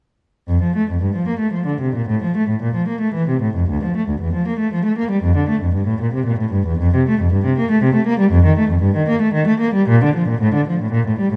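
Radiant and dance-like, this brief passage cut from a longer baroque-style classical suite movement in F major features a single bowed cello playing alone from 0.5 to 11.4 seconds at 115 BPM in a rubato 3/4 with uneven beats, its warm, up-front tone shaped by expressive vibrato, soft attacks and portamento across its low register, all set in a dark mix with moderate recital hall reverb.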